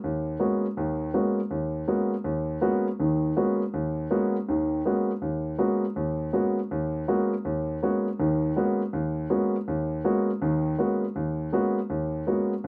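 Jazz at 162 BPM in 4/4, swung on the eighths, this short passage is cut from a longer piece and sits in G# minor with a spiritual, searching mood. A lone grand piano carries the whole 12.7 seconds, its tone dark, mellow and vintage, placed up front in the sound. The playing stays in the lower and middle register, from D#2 up to F#4, and rests on a single G#m11 harmony throughout. A light reverb gives the room a gentle halo around the smooth piano sound. The result feels introspective and patient, like a pianist quietly exploring one rich chord.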